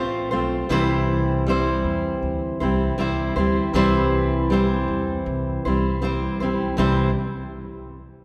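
Easy-going and carefree, this short acoustic pop excerpt at 79 BPM in C major pairs a bright, up-front fingerpicked steel-string guitar on fresh strings with a woody, thumpy pizzicato upright bass sitting lower in the mix, both moving from F/A to C with a light sixteenth-note swing and stopping at 7.1 seconds, all bathed in the long, wet reverb of a church.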